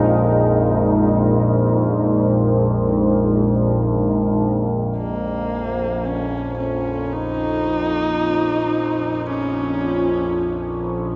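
In free time, this dark, ominous ambient drone fragment in Bb minor opens with a bright, detuned sawtooth pad holding sustained chords over a low, ring-modulated drone of moving overtones with its own built-in reverb, both chorused and up front, until the pad stops at 5.0 seconds and a husky, boxy horsehead fiddle enters with a focused melody marked by vibrato, portamento and delay, set inside a cavernous cathedral reverb with a muted top end.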